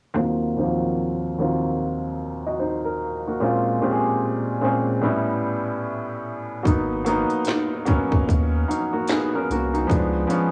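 A hazy, cassette-recorded home sound in a small room frames this melancholic lo-fi hip hop excerpt at 74 BPM with a swung 16th feel, where a soft, intimate, up-front felt-muted upright piano, low-pass filtered with tape character and audible action noise, carries a filter sweep through chords from Ebm69 to Db7b9 alone until 6.7 s, when a round sine sub bass and an up-front electronic garage drum kit with a tight kick, cracking snare, crisp hi-hat and finger snaps, re-recorded in a large room, join it.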